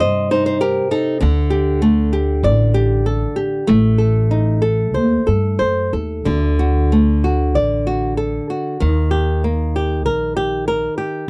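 A bright, boxy fingerpicked flamenco guitar carries this mournful, longing fado-style ballad excerpt with a nylon-string fill in its opening 1.2 seconds, while a woody pizzicato upright bass sits up front beside it in a dry, close 1970s-style studio sound, the uneven rubato pulse drifting through chords from Cm to Eb.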